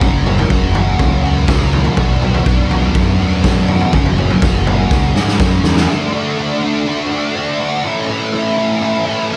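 A straight 4/4 pulse at 123 BPM drives this dark, mysterious psychedelic rock excerpt, with a raw garage drum kit of punchy kick, medium-tuned snare and toms sounding gritty and mid-forward up front, alongside a round, fuzz-drenched fingered bass, through chords of F#, Bm and back to F#. A biting, double-tracked overdriven guitar plays the riff through a flanger, and after a drum fill from 4.9 seconds the bass and drums stop at 5.9 seconds, leaving the guitar alone over D and A until 9.4 seconds. Lush hall reverb soaks the mix in a dreamy haze.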